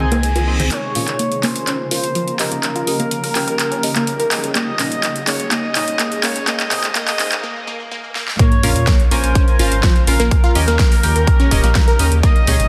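A dense, heavily limited progressive house excerpt with light digital ambience and a bittersweet, dreamy mood, where a smooth, mellow portamento lead with vibrato sings over a shimmering, ethereal pad, glossy retro polysynth stabs, lush detuned pluck arpeggios under a filter sweep, and a deep, rumbling saw bass pumping with the sidechain, while soft congas, cowbell and bongos stop by 0.7 seconds, very quiet sound effects and an overdriven big-room kit with a huge snare and metallic hats build through a break, and a punchy up-front kick arrives at 8.4 seconds for the drop.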